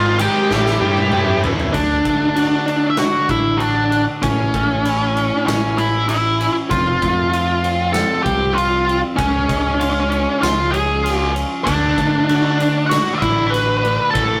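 A straight 4/4 pulse at 97 BPM drives this short, cathartic cut from a longer quiet-loud alternative rock piece, with a restless edge throughout. Up front, a dark octave-fuzz lead guitar carries the melody from start to finish, while an overdriven, growly electric bass holds down the low end with punchy picked notes. A big acoustic rock kit with a punchy kick, medium-tuned snare, bright cymbals and toms enters just after the start and soon launches into a drum fill, as a thick fuzz guitar and a high-gain distorted guitar play the riff together before both drop out at 1.7 seconds. From there a clean, compressed twelve-string electric guitar adds bright arpeggios over chords moving through D, A, F and C#, and the high-gain guitar returns in the background at 11.7 seconds as the harmony comes back to D. The whole performance sits in a moderate stone room reverb, giving it the rough, live feel of a rehearsal-room recording.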